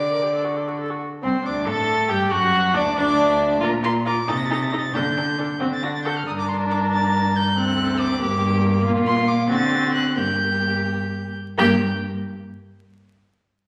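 A rich first violin carries the high melody over a second violin's inner line, a nasal viola with light vibrato in the accompaniment, and a dark, up-front cello on the bass, each played by a single bowed player with a reedy gut-string, period-style tone. This urgent, dramatic classical-period movement for string quartet in G minor moves in a quick 6/8 at 83-95 BPM in dotted quarters, then slows from 8.2 to 11.6 seconds before the cut from a longer piece. A recital-hall reverb and a layer of vinyl crackle surround the players.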